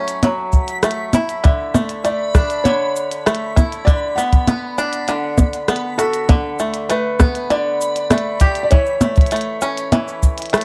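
A dry, close 1970s-style studio sound with small room ambience frames this delicate, pastoral folktronica excerpt, where a bright, twangy fingerpicked banjo plays tape-echoed arpeggios up front over clicky electronic hats, rim clicks, shaker and blips from a minimal drum kit and a boomy acoustic kick, while a reversed, granular, dreamy texture hovers in the background and a soft, mellow felt-muted upright piano, with audible action noise and its own tape echo, enters at 1.4 seconds to carry an intimate melody.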